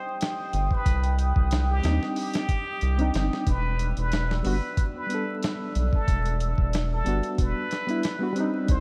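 A deep, round analog bass sits up front from 0.5 s in this dark, smoky trip hop excerpt, alongside a gritty, compressed sampler-style soul drum kit with a thumpy kick and a touch of studio reverb. A distant, plunger-muted trumpet plays a jazz-style solo melody with wah-wah and light vibrato through tape echo, against a moody detuned analog pad with chorus and phaser, while a reedy electric piano with tremolo and tape echo joins at 1.8 s. The harmony moves from Cmadd9 to Em7 at 3.5 s, all framed by light digital ambience and vinyl crackle.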